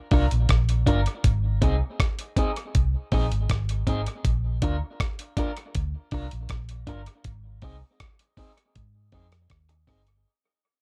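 A warm, laid-back roots reggae excerpt, cut from a longer piece and fading out across its 10 seconds, where a slightly broken-up electric guitar through a small old amp, treated with harmonic tremolo and tape echo, plays accompaniment over a dark, round, foam-muted fingered electric bass and a gritty, compressed sampler-style drum kit of hi-hat, thumpy kick and rim click, both sitting up front in a dry room as the chords move between Bb and Ab.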